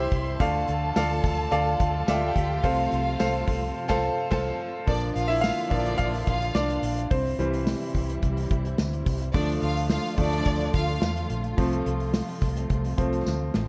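Piano-driven pop in F major at 107 BPM, hopeful and uplifting, this excerpt from a longer piece sets a brilliant, up-front grand piano over a tight, rolled-off drum kit, a round, foam-muted electric bass and a jingly tambourine, while a lush, woody string section holds dark sustained chords in the background. An expressive violin section with vibrato and portamento carries a second line through delay until 11.3 seconds, and after a band accent the piano takes a solo from 4.9 seconds over chords moving from Dm through F/C, Bb and C. A drum fill at 13.3 seconds closes the passage, all set in light reverb.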